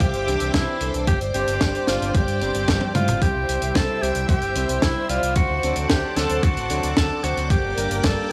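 A dry, gritty hardware sound with transformer saturation and small-room ambience frames this bittersweet, danceable italo disco excerpt in straight 4/4: a bright, punchy alto saxophone with vibrato carries the melody over lush string-machine chords with ensemble chorus and fat, nasal synth-brass stabs, while a fingered electric bass through an envelope filter, a thumpy electronic kick and a tight funk kit with hi-hat, toms and a high-tuned snare drive the groove, with a drum fill from 2.7 to 3.2 seconds.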